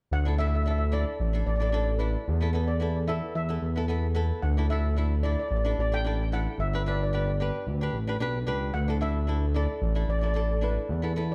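A shimmering, metallic steel pan melody with digital delay and a smooth, detuned sawtooth synth bass gliding up front both open this carefree, bouncy calypso at 111 BPM in D major, tuned to A4 = 436 Hz, with a fingerpicked acoustic flamenco guitar joining at 0.3 s over Dsus2, Asus2/E and G chords in a dark, warm production with light reverb, cut from a longer piece.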